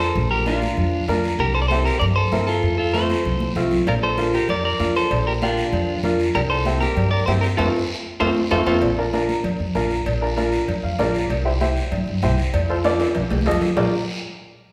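A festive, joyful cumbia in 4/4 at 194 BPM in Bb major, where the up-front clean electric guitar carries a picked melody with spring reverb until 8.8 s over a brilliant, slightly detuned upright piano, a woody, growly pizzicato upright bass, high-tuned congas with hard hands, a raspy distant guiro, and ringing cowbell and timbales that join at 3.9 s, all set in a reverberant recital hall, with drum fills, a band accent and a brief piano fill at 10.7 s before this section of a longer piece cuts off.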